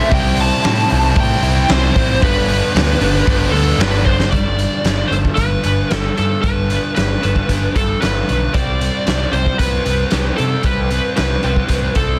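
Quiet-loud alternative rock in a restless, cathartic mood, this clip sets an up-front overdriven lead guitar with tape echo over a raw garage guitar riff, a thick fuzz guitar that drops out at 4.3 seconds just after a drum fill, a growly, punchy overdriven bass and a saturated, gritty garage drum kit with a fat snare in a bright stone room, while a very quiet, twangy twelve-string electric guitar picks clean arpeggios from 4.3 seconds, all under a dense, heavily limited modern master.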